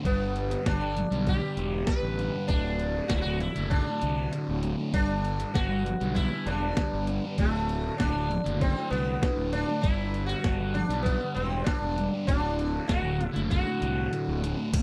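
A buzzing, shimmering sitar carries the melody with a slapback echo over a hypnotic, trippy psychedelic rock groove in D major at 98 BPM, as the harmony alternates between G and D. Underneath, a dark, double-tracked fuzz guitar riff with phaser and an overdriven, round fingered bass sit up front beside a gritty, pitched-down boom bap sampler-style kit with a thumpy kick and high-tuned snare, while a very quiet tonewheel organ holds clean sustained chords through a slow rotary speaker. The dry, close 1970s-style sound is cut from a longer piece and features brief breaks at 4.3 and 14.1 seconds.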